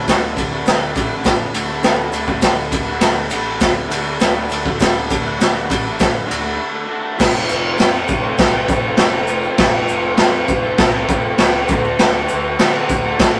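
Raw and rowdy, this garage rock passage, cut from a longer piece, moves at 100 BPM in a straight 4/4 centered on D mixolydian. The acoustic drum kit sits up front in a small room, with a boomy kick, a medium-tuned snare, crash and ride cymbals, and a gritty, saturated tone with a rolled-off top. Behind it, a bright, double-tracked electric guitar plays an overdriven picked riff, while a fuzz picked bass, pushed through overdrive and tube saturation, holds down the low end. A vintage combo organ sustains mellow chords with light vibrato at a very quiet level, joined by a grainy tube shaker. After a short break at 6.6 seconds, the harmony shifts from D to F at 7.2 seconds, and a transistor combo organ fill arrives at 10.8 seconds before the chord returns to D, captured as a rough rehearsal-room recording with light reverb.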